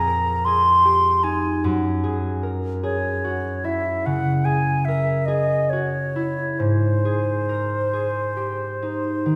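A pure, straight-toned concert flute sings the tongued melody up front while a bright, ringing, fingerpicked concert harp accompanies alongside, equally up front, in this dreamy, pastoral impressionist classical excerpt, moving in a rubato 12/8 at about 44-51 BPM through Fm9, Gb9 and Abmaj7 harmonies, all bathed in the lingering reverb of a recital hall.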